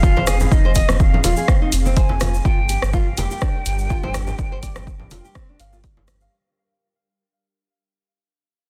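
A punchy, up-front electronic kick drives a swung afro house groove with dark hi-hats, rim clicks, hard-hand congas and a grainy, distant shaker, while a round sine sub bass pumps beneath fingerpicked nylon-string guitar arpeggios with dub echo, an ethereal chorused pad in the background and a distant, expressive flute melody with vibrato, all moving from Fm7 to Gm in this spiritual, hypnotic drop that fades out from 1.2 seconds.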